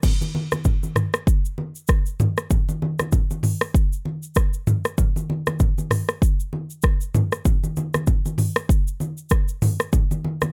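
An afro-pop drum kit and congas start together at 0.0 seconds in this joyful, sunny afrobeats excerpt, set at 97 BPM in 4/4 with a swing of 58% on the sixteenths. The electronic, produced kit sits up front, its deep kick and crisp hats joined by crash cymbal, rim click, shaker and toms. The acoustic congas are bright and low-tuned, with a thin skin, hard hands and a small-room character, and they also sit up front, though at a lower level than the kit. The mix is dry, with little reverb, and has the rough feel of a home demo. The two parts play through a single section that runs to 9.9 seconds, and the kit and congas stop at 10.5 seconds.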